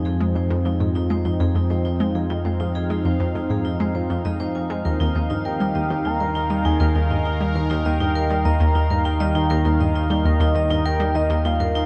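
An airy, resonant pad with chorus, a deep, tube-saturated analog bass and a metallic, ringing hard-mallet vibraphone fading in with delayed arpeggios open this expansive, mysterious stretch of sequencer-driven ambient space music, joined at 0.2 s by a detuned analog pluck riff and from 5.5 s by a soft, dark octave-layered synth lead with vibrato carrying the melody as the harmony moves from Fm7 to Eb, set in a vast, echoing cathedral reverb with a cassette-tape tone.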